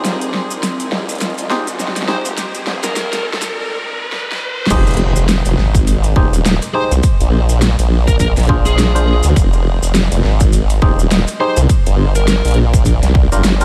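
Swaggering and gritty, this glitch hop excerpt opens with a build-up in which a dubstep drum kit with a huge snare and metallic hats runs fills, a riser sits in the background, and stringy clav stabs with delay and sidechain pumping float over a very quiet, ethereal pad and mellow maracas. A dark, overdriven lead guitar with delay enters at 2.1 seconds in the background. At the drop at 4.7 seconds, a punchy, tape-warm electronic kick arrives with an impact, while the up-front formant-sweep wobble bass, detuned and saturated and present from the start, anchors it all under light reverb and vinyl crackle.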